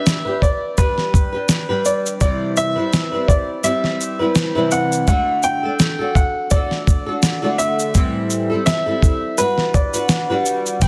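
A woody upright piano carries the melody from the start over a double-tracked, fingerpicked flamenco guitar that sits up front, with a gritty, compressed sampler-style kit of thumpy kick, fat snare, shaker and crash joining at 0.1 s to give this sunny, carefree acoustic pop a lightly swung sixteenth-note feel. The harmony moves from G through Cmaj7, D and Am7 to Gmaj7, and a dark, round, foam-muted electric bass lands with a punchy G only at 10.8 s, just before the cut from a longer piece. Light reverb surrounds the parts, and the master is dense and heavily limited.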